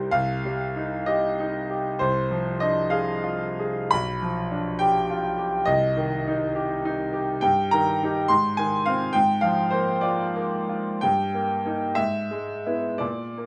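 A brooding, passionate romantic character piece for solo grand piano unfolds in 6/8 with free rubato, its clear, smooth, vintage tone ringing with long sustain up front in light reverb as it moves from a dark minor opening into a brighter major turn at 7.4 seconds before this excerpt breaks off at 13.5 seconds.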